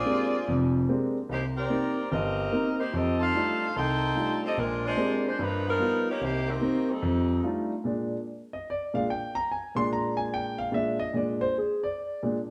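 A stone room's reverb wraps this live-sounding jazz fragment, cut from a longer piece, in a joyful, brassy glow as a mellow, tightly blended saxophone section carries the swung melody with light vibrato over a grand piano's deep-bassed chords. The horns fall away at 7.4 seconds, and from 7.8 seconds the piano takes a solo of its own, natural and up front, until the clip ends at 12.5 seconds.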